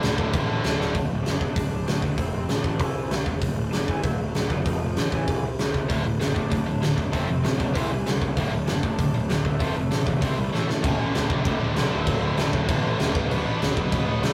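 Upbeat, energetic punk rock excerpt driven by a big, up-front acoustic drum kit with a fat snare, punchy kick and bright cymbals, a growly fuzz-picked electric bass, a tight, double-tracked distorted rhythm guitar riff that drops out after 0.9 seconds and returns at 5.9 seconds, and a lo-fi overdriven lead guitar melody tucked in the background, all captured in a rough rehearsal-room recording with warm saturation and drum fills at 0.8 and 10.5 seconds.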